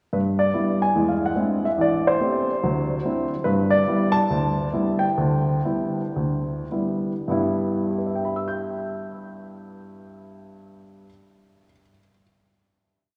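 A deep church reverb surrounds this short solo jazz piece, its long decay giving the room a spacious, resonant glow. A dark upright piano sits up front, its tone mellow and woody, playing in G major with a swung, rubato feel that moves between 99 and 146 BPM in 4/4. The melody is built from song-like motifs over a stride bass and close voicings, passing through a sophisticated turnaround of rich jazz chords before returning home to G6. The tempo slows from 3.5 seconds to 7.3 seconds. A final chord then rings out until about 12.1 seconds, blooming warmly into the hall.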